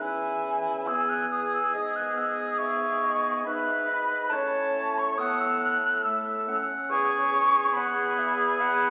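Classical wind quintet music, a slow romantic movement in triple time with a rubato feel and a serene, warm mood, cut from a longer piece. An airy, expressive concert flute carries the tongued melody up front with vibrato, while a mellow oboe sings a second line, and a clarinet, French horn and bassoon supply accompaniment and bass over chords moving from E to G#m, A and back to E. Every part sounds distant in a reverberant recital hall, heard through the crackle of a very old 78 rpm record.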